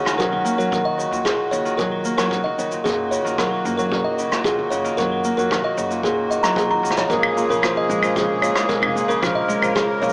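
Folktronica in Bb minor at 113 BPM with a wistful, autumnal mood: a tinkling, slightly out-of-tune music box carries a second line through digital delay over sweet, reedy accordion chords and ringing, up-front Celtic harp arpeggios, while a distant, roomy kit of brushed rim click, shaker, claves and boomy kick joins with woody pizzicato upright bass, all in a moderate echo-chamber reverb with a small-speaker sound and a drum fill at 6.8 seconds leading into a new section at 7.1 seconds in this cut from a longer piece.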